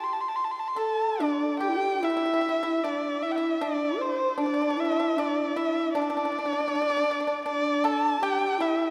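Bathed in a long church reverb, this rubato fragment of Chinese traditional chamber music opens with a dark, nasal erhu carrying a graceful, pastoral melody with vibrato and portamento, joined at 0.8 seconds by a breathy, reedy low xiao up front and a dry, percussive pipa played with fingerpicks sitting lower in the mix.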